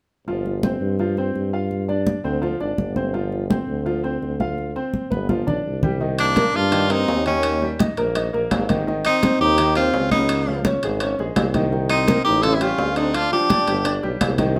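An edgy, forceful tenor saxophone carries the melody in this driving, fiery Afro-Cuban jazz excerpt, arriving at 6.2 s with a buzzy, metal-muted trombone on a second line and ringing metal-shell timbales. Underneath from the start, a bright, woody upright piano provides accompaniment alongside a soft-attacked tuba bass and high-tuned, damped congas, and a drum fill at 4.9 s leads into the second section. The band sits in a moderate club reverb, and the harmony moves through chords such as Cm9, Db9 and Aaug7 before settling on G.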